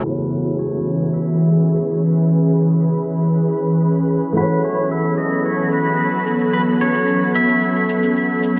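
Sunset chillout at 111 BPM in E major, smooth and blissful, where an up-front ethereal, detuned sawtooth pad holds slow-attack chords with ensemble chorus, a twangy pedal steel guitar sings a clean slide melody with volume swells and delay, a fingerpicked flamenco guitar with audible finger squeak sits in the background, a twinkling FM granular texture adds octave-up shimmer from 0.8 s, and a tape-warm electronic shaker stays very quiet underneath, the dreamy mix soaked in a huge 8.1-second ambient reverb under a low-pass filter and a slow filter sweep.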